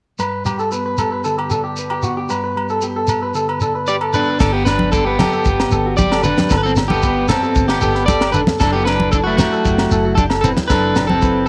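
A slightly broken-up electric guitar melody sits up front from 3.9 s in this sunny, warm highlife guitar band excerpt at 114 BPM in G major, joining a second edgy guitar playing picked arpeggios with slapback echo, a dark, clean, fingered electric guitar in the background, ringing agogo bells and a grainy shekere, before a woody, thumpy pizzicato upright bass and a tight, dry funk drum kit with bright cymbals and a high-tuned snare enter at 4.4 s and thick-skinned congas played with hard hands follow at 4.8 s, all over light reverb and studio ambience.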